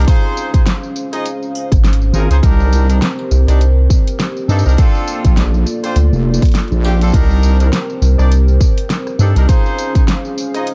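A rubbery, hollow square bass bounces up front through this playful, gritty glitch hop excerpt at 102 BPM with a swung 16th-note feel. A heavy, saturated wobble bass joins at 2.1 s, and a punchy electronic kick anchors the groove beside a pop kit of fat snare, hi-hat, rim click and tambourine. Bright horn stabs with light vibrato and delay ride over a deep, moody analog pad carrying 12-bit sampler grit through Dbmaj7, Cm7 and Bbmaj7, the horns and pad pumping against the sidechain, all within a dry, dark production dusted with vinyl crackle.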